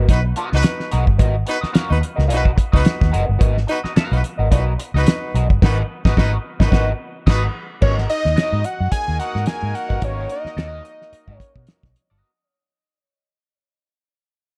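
A swung sixteenth-note funk groove at 109 BPM in G# minor sets a sly mood, with a cloth-damped, thuddy drum kit and a round, foam-muted fingered bass up front, a twangy, slightly broken-up guitar through wah and analog chorus, and a clear horn section in octaves, while a fat, nasal analog lead with tape echo takes the melody from 7.8 seconds as the cut from a longer piece fades out under light reverb.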